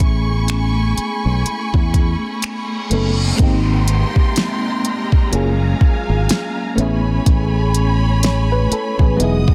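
Tender and romantic, this short contemporary R&B passage pairs a mellow FM electric piano, colored by chorus, phaser and tremolo, with a lush, distant bowed string section, a round, up-front fingered bass and a smooth drum kit of finger snaps, hi-hat, soft kick and fat, softly clipped snare in a swung groove, while a reverse cymbal swells in at 2.4 seconds to usher in the shift to the second section at 3.4 seconds over drifting major-ninth chords, all in a dry, dense, heavily limited mix.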